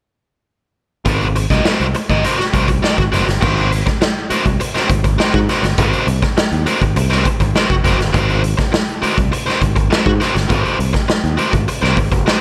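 Playful and funky, this short excerpt from a longer piece sits at 102 BPM in a straight 4/4, centred on Ab mixolydian and opening on an Ab9 chord. All three parts come in together at 1.1 seconds: a raw garage drum kit, a fretless electric bass and a biting overdriven guitar. The drums sit up front with a boomy kick, a medium-tuned snare, hi-hat and crash cymbal, their saturated, gritty character colored by a bright stone room that pumps and a rolled-off top. The fretless bass is warm and direct, moving between Gb1 and Ab2, while the picked, overdriven guitar plays accompaniment between Gb4 and Eb5, up front and washed in spring reverb. A brief opening passage gives way to a longer second section at 3.4 seconds, with the bass stopping at 12.2 seconds and the guitar and drums carrying on to 12.4 seconds under a light overall reverb.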